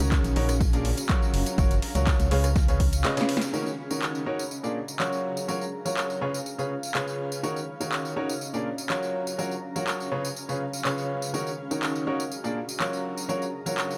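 A bright, woody upright piano sits up front with a riff over Ebm7, Bb7, Gbmaj7 and Db7 in this soulful, bittersweet piano house cut in Eb minor at 123 BPM, its tape echo and sidechain pumping riding over a blurred, evolving granular pad in the background. For the opening seconds a hollow, organ-like FM bass, an overdriven punchy electronic kick and a very quiet, gritty sampler-style kit with ride and fat snare join the analog drum machine's claps, hats, rim clicks, snare and tambourine. The kick and bass drop away just before 3 seconds as a drum fill begins, and after the fill and a band accent near 3.4 seconds the sampler kit follows. The piano, overdriven drum machine and cloudy pad then carry on under light reverb until 14.0 seconds.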